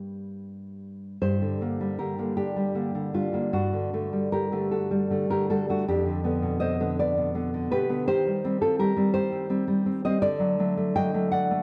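Wistful and passionate, this romantic piece for solo classical guitar moves in a rubato 6/8 at about 46-56 BPM in dotted quarters, set in G minor and tuned to A4 = 441 Hz. The nylon-string guitar sits up front with a dark, deep, thumb-plucked tone spanning F2 to G5, passing through Gm, D/G, G7/F and Cm/Eb before coming to rest on D at 10.3 seconds. A moderate recital-hall reverb surrounds the playing, nothing sounds above 10.5 kHz, and this short passage is cut from a longer piece.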